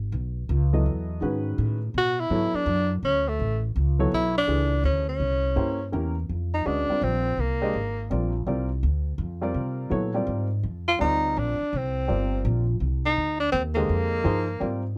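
Closely miked and nearly dry, this brief jazz excerpt in a swinging 3/4 at 166 BPM feels spiritual and intense, with a woody, growly pizzicato upright bass opening alone before a slightly detuned upright piano with short sustain joins at 0.7 seconds. A breathy tenor saxophone carries the solo melody from 2.0 seconds, its light vibrato, scooped notes and smooth top giving it a warm edge. Rich extended chords such as C#m11 and C7b9 give way to F dorian at 6.3 seconds, and the saxophone pauses before returning at 10.9 seconds.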